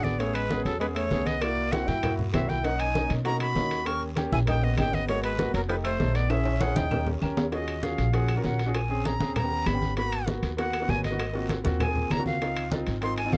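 Opening at a driving 196 BPM, this sophisticated Afro-Cuban jazz passage sets a breathy, reedy flute up front over a dark, subtoned tenor saxophone, a natural-sounding grand piano with deep bass, and a woody, thumpy pizzicato upright bass, while tight high-tuned bongos, low-tuned congas, a raspy guiro, ringing metal-shell timbales and vintage claves sit in the background; during a drum fill that begins at 6.3 s the saxophone drops out at 7.1 s, and from 7.5 s the flute takes a vibrato-laden solo in Eb minor, all captured with close, detailed microphones and little reverb.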